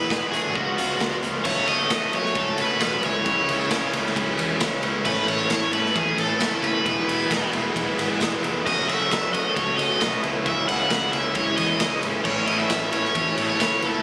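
A straight 4/4 pulse at 133 BPM drives this carefree, jangly indie rock excerpt, tuned slightly flat to A4 = 438 Hz. Up front, a cranked stack guitar carries the melody with overdrive and slapback echo. Two picked, overdriven guitars sit further back on riffs: a crunchy one coated in lush chorus and slapback echo, and a distorted electric with plain overdrive. A raw garage drum kit, also up front, brings a boomy kick, medium-tuned snare, hi-hat, ride and crash in a saturated, gritty stone-room sound with a pumping ambience and rolled-off top, joined by a punchy, amped fretless electric bass. After a brief opening on D/F# and C#7, a very quiet sweeping pad of detuned sawtooth and sine tones enters at 1.5 seconds with a resonant filter swell and slow attack, alongside a faint, jingly vintage tambourine. From there the chords move through F#m, C#madd9, A and Eadd9, and the recording carries a small-room, phone-captured character with studio reverb and compression.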